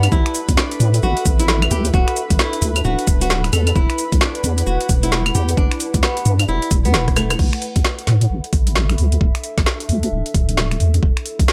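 Set in a digital ambience, this bouncy, late-night two-step garage excerpt sets a fingerpicked flamenco guitar melody, fresh-stringed with audible finger squeak and a touch of delay, over a smooth sawtooth pad in the background, a nostalgic, warbling lo-fi tape-like pad, a deep, dark wobble bass with sidechain pumping, an overdriven garage kit of woody snare, metallic hats, crash cymbal, claves, finger snaps, rim clicks and shaker, and a knocking, up-front electronic kick, with the guitar and smooth pad dropping out around a drum fill and a band accent at 7.3 seconds.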